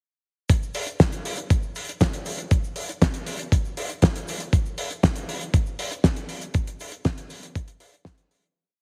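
An overdriven electronic kick drum leads this short italo disco piece, thumping out a four-on-the-floor pulse at 119 BPM in a straight 4/4 with a gritty, sampler-style punch that sits up front. Beside it, a damped 70s drum kit plays a disco machine beat on closed and open hi-hat, cabasa and a fat snare, its acoustic tone dry, dark and smooth with a rolled-off top. Both parts carry studio reverb, and the kit is the quieter of the two, which keeps the kick's grit at the center of the groove. The whole piece is a single chorus of drums alone, melodramatic and danceable, with a heavily compressed, radio-style sound and a light touch of room. The kick drops out at 8.2 seconds, just before the kit, inside a fade-out that begins at 5.9 seconds.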